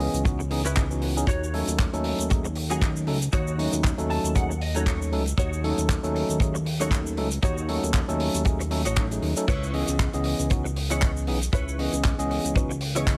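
A bright tine electric piano, pumping with sidechain and tape echo, opens this cosmic, groovy nu-disco excerpt at 117 BPM alongside a compressed, picked clean guitar riff with ensemble chorus, a fat saturated sawtooth bass, and a damped 70s kit of dark cymbals, hi-hat, cabasa and handclaps, with a tight, up-front kick arriving at 0.3 seconds, the guitar adding a fill at 3.8 seconds over C#m7 and D#m7b5 chords in a small room.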